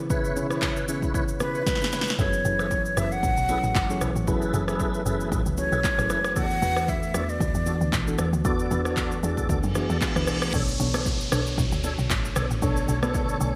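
A hypnotic, late-night amapiano groove at 115 BPM in 4/4, swung on the sixteenths, rides on a punchy, tape-warm deep house kit of kick, snare, handclaps, rim click and shaker with gated reverb, while very quiet congas and bongos add a small-room acoustic layer underneath. In B dorian, a soft, round FM electric piano with chorus carries the accompaniment through C#m7, F#m11 and E9sus4, backed by an ethereal, detuned pad holding very quiet sustained chords and a lightly overdriven tonewheel organ whose stabs turn through a slow rotary speaker with key click and digital delay. A breathy, close-miked silver flute takes the melody up front from 1.4 to 8.1 seconds, its straight, slightly unsteady tone trailed by digital delay. The woody, percussive log drum bass enters at 2.2 seconds after a short drum fill, giving the low end its decaying, punchy thump. Electric piano fills and a reverse cymbal lead into a drop on Bm9 at 10.5 seconds, where a downlifter sweeps through a bright 1980s-style digital mix set in moderate plate reverb, as this cut from a longer piece carries on.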